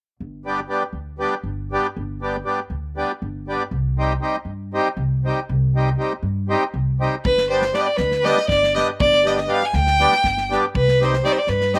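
Balkan folk in the manner of a wedding band, this restless, bittersweet passage from a longer piece moves in a brisk 7/8 at 239 BPM counted in eighths, with a straight feel. A dark, woody upright bass with gut strings opens the passage, plucked pizzicato and thumpy, while a reedy, full accordion fills in the harmony as the chords move between G and C minor. The drum kit enters at 7.2 seconds with a tight kick and a medium-tuned snare, its sound polished yet airy, as if in a small room. At 7.3 seconds a single bowed violin takes the melody, clear and focused with vibrato, sitting up front yet slightly distant, with a slapback echo. The recording has a dry, open-air character, as if captured outdoors.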